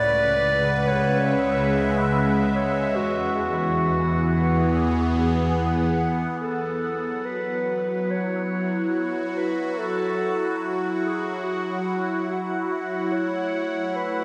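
A lush hall reverb with a long tail bathes this spacious, serene ambient passage in F# minor, cut from a longer piece and drifting in free time. Up front, an evolving wavetable pad built from detuned unison triangle tones sustains bright, morphing chords with a slow attack and long release, colored by phaser, its own reverb and shimmer. Beneath it, a rich bowed double bass section plays smooth, even low notes with vibrato until 6.4 s, when the harmony moves from C#m7 and Eadd9 to a long F#m7. A mellow, distant clarinet carries the melody in a roomy classical style, its solo line trailed by shimmer reverb and tape echo. In the background, a glass harmonica holds a single glassy, ethereal high tone with a vintage, band-limited quality and its own shimmer, before the passage settles on A6 at 13.1 s.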